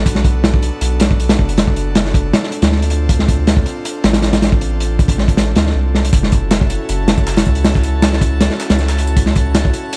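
A crunchy, saturated breakbeat kit with a tight kick and gritty, rolled-off top drives this dark, frenetic drum and bass excerpt at 158 BPM in F# minor, over a deep, round sub bass and an airy, breathy pad with chorus moving through Bm7, Dm7 and F#m7, while a compressed sampler-style kit with high-pass filtered hats and snare and a glassy, drifting harmonics texture with reverb join in the background at 6.1 and 6.4 seconds, all set in a small room with vinyl crackle.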